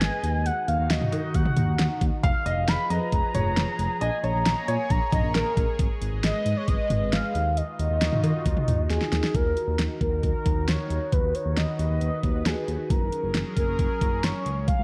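Nocturnal and melancholic, this synth-pop cut in Eb minor moves at 135 BPM. A round, horn-like synth lead carries the melody through chorus, phaser and digital delay, over a swirling, detuned analog pad, a smooth sawtooth bass with vibrato, and an up-front electronic drum kit of knocking kick, fat snare, metallic hats, toms and cowbell that plays a fill at 8.9 seconds. A polished grand piano adds a delayed second line from 2.2 to 5.7 seconds, and the mix sits in light reverb and the worn, warbling pitch drift of old cassette tape.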